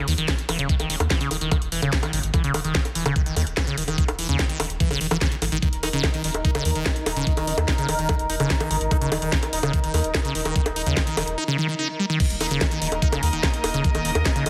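Psychedelic trance with a driving, alien mood, cut from a longer piece and set in a straight 4/4 metre. A squelchy, resonant liquid acid bass riff sits up front from the start, its sawtooth filter sweep colored by phaser, tape echo and sidechain pumping, while a round analog bass fills the deep register beneath it. Up-front drums join almost at once: a knocking electronic kick and a layered kit with a cracking snare, bright hats, bongos and crash cymbal, re-recorded in a small room. At 5.6 seconds a bubbling stepped-filter texture arrives, holding detuned sawtooth chords with random filter steps, chorus, built-in reverb and sidechain pumping. The drop lands at 12.2 seconds, where a distant chamber string section with a reedy gut-string tone and light vibrato enters in the background, also pumping with the sidechain. The whole mix carries light reverb and a heavily compressed, radio-like sound.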